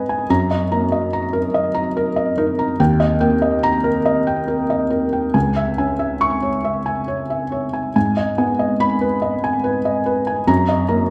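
Melancholic and reflective, this brief cut from a longer neoclassical minimalist piano piece features a solo felt-muted upright piano, soft and intimate with audible action noise and a slapback echo, moving in a rubato 6/8 at 48 BPM in G# minor through F#6, D#, C#m and G#m chords across a range from C#2 to C#6, set up front in a wet recital hall reverb.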